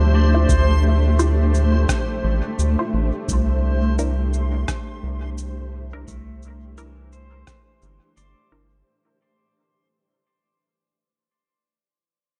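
A round, up-front analog bass anchors this hazy, meditative ambient dub fragment at 86 BPM in 4/4, with a 58% swing on the 16ths, tuning at A4 = 443 Hz and chords moving from Dm9 to C7. Around it, a blurred granular cloud pad with vintage 12-bit sampler grit, a reversed, dreamy swelling texture, and a resonant filtered chord stab carrying phaser, dub echo and a filter sweep drift over a deep, tape-warm electronic kick and a muffled, pitched-down electronic cabasa and rim click with dub echo. In the background, a clean pedal steel guitar plays slide arpeggios through tape echo and lingers alone until 11.5 seconds, after the rest stops near 8.9 seconds, all within a dark, lightly reverberant production that fades out throughout.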